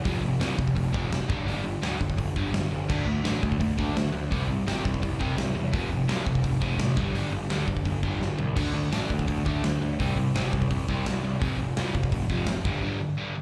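A crunchy, double-tracked overdriven guitar leads this rowdy, rebellious punk rock clip, picking a power-chord riff that cycles through F5, G5, D5 and C5 in straight 4/4. A growly, fuzzed electric bass and a big, punchy acoustic rock kit with crash, hi-hat and toms drive underneath, with a drum fill at 8.2 seconds. It sounds like a live gig heard through the venue's PA, with light club reverb around the band.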